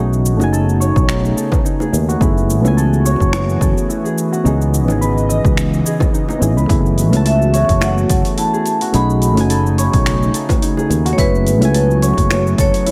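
Smooth and relaxed, this sunset chillout excerpt moves at 107 BPM in F# dorian with a gentle 16th-note swing, as soft, warbling electric-piano-like synth keys with chorus and tape echo move through B13, F#m11 and C#m9 chords over a growly, up-front fretless bass and a punchy, overdriven electronic kick. A breathy, detuned pad hangs in the background, while a mellow, thumb-plucked concert harp ripples through arpeggios and low-tuned bongos, played with soft hands, sit behind a layered deep house kit of cabasa, finger snaps and hi-hat. At 7.3 seconds a metallic, ringing vibraphone struck with hard mallets enters with the melody, its medium motor vibrato trailed by delay, all set in light reverb.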